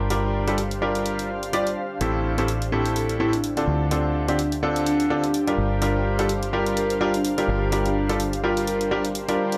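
Bittersweet yet energetic, this piano house excerpt rides a swung 4/4 groove as a clear, worn grand piano riff with short sustain sits up front through analog delay, over a foam-muted fingered electric bass filtered low and an electronic hi-hat. A cloudy, evolving granular pad hangs in the background, and from 3.0 to 9.0 seconds a mellow, ringing vibraphone played with soft mallets adds a delayed melody. The chords move through Gm7, Am7 and Dm7 in a dreamy mix soaked in plate reverb.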